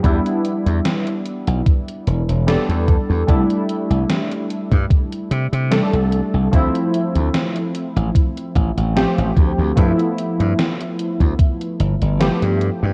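Worn, warbling cassette tape colors this hazy, nostalgic vaporwave fragment, cut from a longer piece, with pitch drift, light reverb and a digital ambience hanging over the whole mix. At a relaxed 74 BPM in 4/4 with a gentle swing on the sixteenths, it moves through Em7, C69, Dm9 and G13 in D dorian. Up front, lo-fi synth keys built from detuned triangle and sawtooth tones carry the harmony, their fast attack and decaying notes shaded by ring modulation, a filter sweep, lush chorus and tape echo. A bright, punchy slap bass sits just as close, its direct and amped tone thickened by tube saturation. A thumpy, sampler-style electronic kick anchors the beat until 11.6 seconds, while a quieter gated 80s digital drum machine adds hi-hat and a snare blooming with gated reverb, both drum parts sounding tape-warm and re-recorded in a large room.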